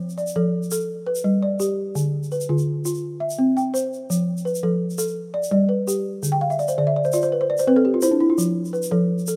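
West African traditional music in a joyful 12/8 at 112 BPM in F lydian, this short excerpt features a woody, round balafon played up front with soft rubber mallets, spinning arpeggios from D3 to G5 over a cycle of F, G, Dm and C with a fill from 6.3 to 8.4 seconds, while a grainy, bright tube shaker sits far lower in the mix, all set in a small room with light reverb and a rough home-demo sound.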